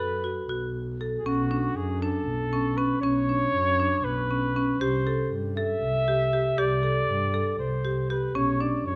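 In a straight 7/8 pulse, this pensive, urgent contemporary chamber piece, cut from a longer work, sets a vintage, punchy flugelhorn melody with vibrato over percussive marimba arpeggios played with medium hard mallets and a woody, bowed sul tasto double bass, all three up front in a moderate recital hall reverb as the harmony moves from Bmadd9 to Cadd9 at 4.8 seconds.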